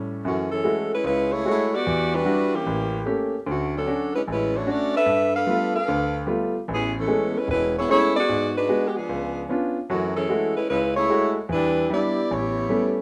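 Dramatic and swinging, this jazz excerpt moves at 150 BPM in 4/4 with a swing feel, set in F# minor and tuned slightly low. A dark saxophone section carries the melody from 0.3 seconds, tight and up front, its jazz-style phrasing colored by light vibrato. Beneath it, a clear concert grand piano provides accompaniment from the very start, intimate and polished, with deep bass, short sustain and audible action noise. The harmony runs through rich chords such as F#m9, A7b9, Dmaj7 and C#7b9 before returning to F#m9 and closing on A9. Light reverb gives the close, present sound a touch of space, and the recording is cut from a longer piece.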